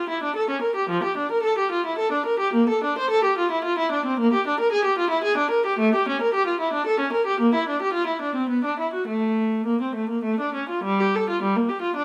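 Introspective and flowing, this short fragment of a baroque-style classical suite movement features one player's bowed viola in period style, its reedy gut-string tone touched with light vibrato as it moves through a rubato 3/4 between F3 and C5, captured up front by close, detailed microphones with light reverb, before shifting into a new section at 10.8 s and breaking off at 12.0 s.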